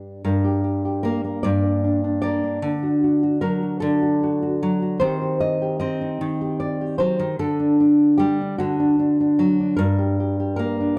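A dark, warm production sets a deep classical nylon-string guitar up front in a moderately large studio reverb, its thumb-plucked tone sounding warm. This haunting, melancholic folk passage, cut from a longer piece, unfolds in a slow 6/8 as the solo guitar moves from Gm through D and Cm/Eb, passes through Dsus4 resolving to D at 8.6 seconds, and returns home to Gm at 9.8 seconds.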